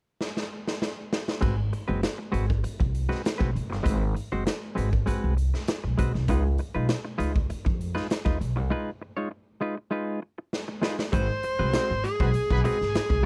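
Playful and gritty, this funk excerpt moves at 99 BPM in a straight 4/4, cut from a longer piece. A raw garage drum kit opens alone with a fill from 0.2 seconds, its saturated sound, punchy kick and medium-tuned snare set up front in a bright, pumping stone room alongside hi-hat and crash cymbal. At 1.4 seconds a woody, thumpy upright bass on gut strings plucks dark low notes while a clean, compressed semi-hollow electric guitar plays fingered accompaniment over Ab7#9, moving to Db9 and returning to Ab7#9. After a break and another drum fill, a bluesy overdriven lead guitar with a dark, distorted picked tone takes the melody at 11.1 seconds. A mellow horn section with a smooth top and tight octave doubling adds a brief second line just after, and the recording stays close and dry, with little reverb.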